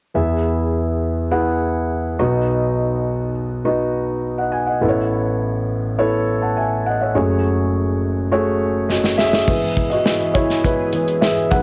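Hopeful and anthemic, this piano-driven pop excerpt moves at a straight, steady pace and carries the soft haze of a home recording on cassette tape. A concert grand piano with deep bass sits up front from the first moment, carrying the accompaniment alone through a chord progression that opens on E and moves through B, Aadd9 and F#madd9. At 8.9 seconds a modern studio drum kit comes in with a fill, bringing a punchy kick, a medium-tuned snare, hi-hat and bright crash cymbals. When the music arrives back on E at 9.5 seconds, the grand piano steps forward for a solo while a lush unison pad enters in the background with sustained chords. The pad is thick and airy, built from detuned sawtooth and square waves with a noise layer, a soft attack and chorus. A moderate studio reverb gives the whole a modest sense of space before the cut.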